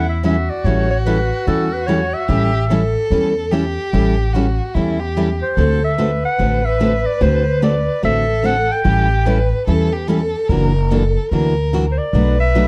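Swinging and lively, this short excerpt of acoustic string swing in the jazz manouche style moves at 146 BPM in A mixolydian, its chords running from A7 through D7 and F#7alt to Bm7 across 12.7 seconds. A breathy, close-miked clarinet carries the melody up front with subtone, vibrato and scooped notes, while a bowed violin adds an expressive second line with portamento and analog delay. Two picked steel-string acoustic guitars with fresh strings supply the accompaniment, one sitting in the background with audible finger squeak, over a woody, thumpy pizzicato upright bass on gut strings, and the production is dark with moderate studio reverb.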